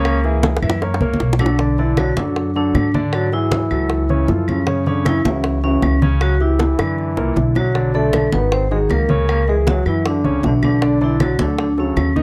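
Congas, bongos and claves drive a straight 4/4 Afro-Cuban jazz groove at 156 BPM in B minor, over a dark, up-front pizzicato upright bass and a warm grand piano whose action noise is audible. A clear, punchy trombone with light vibrato opens with a forceful solo before the metallic, ringing vibraphone takes the melody at 1.4 s, lending the sultry, fiery passage a vintage flavour. The sound is dry and close, like a 1970s studio session, with tight, high-tuned bongos and distant claves.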